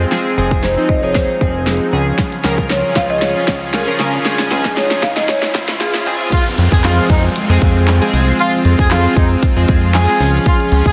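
A clear, pop-style horn section with vibrato takes the melody at the drop at 6.3 seconds, carrying a digital delay through the rest of this bittersweet, driving dance-pop excerpt in F minor at 116 BPM, in a straight 4/4 that moves between F minor and D-flat. Before that, a woody marimba played with medium mallets leads from 0.6 seconds, its padauk bars heard in a boxy small room and echoed by its own digital delay, over a build-up with a drum fill and a filter sweep. A punchy, layered electronic pop kit sits up front with a fat snare, kick, hi-hat, handclaps and crash cymbal. Underneath, a retro, nasal synth bass with a moving notch and filter pluck joins a glossy, full-bodied chorused polysynth and a lush, detuned supersaw pad in the background, all three pumping from sidechain compression. A very quiet riser and downlifter enter at 1.0 seconds, and the dense, heavily limited modern master carries light reverb and digital ambience.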